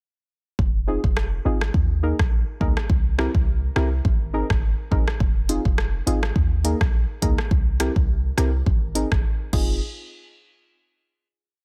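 A tough, sultry dancehall piece at 104 BPM in F minor opens at 0.6 seconds with a sparse, up-front electronic drum kit of deep kick, crisp hi-hats, rim clicks and crash cymbal, its snare softly clipped, over a boomy, clean sine-like 808-style bass that plays a syncopated low line. Deep, nasal, detuned chord stabs treated with chorus land on the off-beats in close voicing, cycling through Fm7, Ebsus4, C7 and Abadd9. The dense, heavily limited, dry mix breaks into a silent gap at 9.2 seconds before a final hit at 9.8 seconds.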